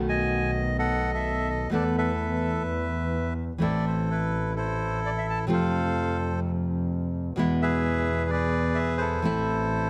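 A rubato 4/4 pulse at about 128 BPM sets the feel of this dramatic, sultry tango excerpt, cut from a longer piece and set in A harmonic minor. A single bowed double bass anchors the low end with a rich, smooth, boxy tone, steady and even with a touch of vibrato. A fingerpicked nylon-string guitar carries the accompaniment, its fresh strings sounding bright and deep in a classical way, with audible finger squeak. The bandoneon enters at 0.1 seconds to take the melody, reedy and mid-forward, sitting up front with a slapback echo. The harmony moves from B7 through Esus4 and E5 to Am, then F and E before settling on Am at 9.2 seconds, all captured by close, detailed microphones in light reverb.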